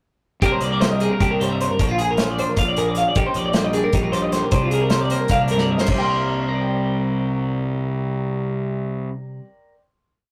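A rough rehearsal-room recording with modest booth ambience frames this short, intricate and wistful math rock and midwest emo piece in C minor, moving at 307 BPM in a straight 7/8. Two twelve-string electric guitars carry it: one bright, clean and compressed, picking a twangy ostinato accompaniment, while the other plays syncopated fingerstyle arpeggios up high over a dark, round fuzz bass locked to the kick drum. The loose indie drum kit, with its tight kick, medium-tuned snare and pumping small-room sound, drives the 7/8 groove until a fill at 5.6 seconds, after which the guitars and bass ring out on a final Csus2 chord from 5.9 seconds.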